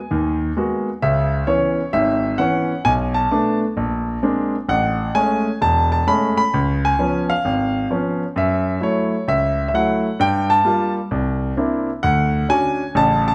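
A clear concert grand piano opens this brief solo jazz cut, taken from a longer piece, on a G#m9 chord before settling into C# minor. The mood is smoky and late-night, moving at 131 BPM in 4/4 with a 65% swing on the eighth notes. Heard up front with a natural tone, the piano spans from a deep bass at E1 up to B5. The harmony drifts through C#m7, Bm7, A#9 and Amaj7, then turns toward C#7, F#m7, Gm7 and C9 before landing on Dmaj7 near 12.0 seconds. A wet recital hall reverb with a 1.5-second decay surrounds the instrument, giving the sense of a church or concert hall space, and the 13.3-second fragment closes there.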